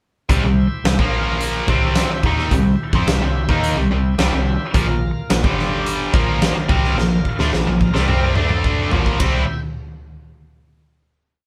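This is a short, complete classic rock piece in C mixolydian at 108 BPM in a straight 4/4, with a sunny, driving mood. A tight, double-tracked distorted guitar sits up front with a bright, picked power-chord riff, moving mainly between C and Bb5 with brief turns to G5 and D5. A woody FM bass with a round, fast-attack tone plays a syncopated line that doubles the guitar riff. A big acoustic rock drum kit, with a fat snare, punchy kick and a dark, rolled-off top, drives a rock groove from the front of the mix and plays a fill from 7.0 to 9.2 seconds. Behind them, a full tonewheel organ with key click, light overdrive and a slow rotary speaker holds shouting chords with swells and changing inversions. The band sounds as if it is playing live in one room with light reverb, and the riff gives way to a final C chord at 9.2 seconds that rings to the close.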